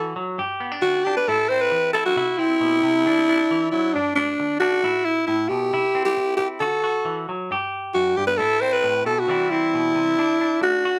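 A growling, raspy alto saxophone sits close-miked and up front, playing a jazz-style solo melody with vibrato over a bright, clean, picked semi-hollow electric guitar in this danceable, warm highlife fragment cut from a longer piece, with light reverb around a chord cycle built on G, Am, C and D.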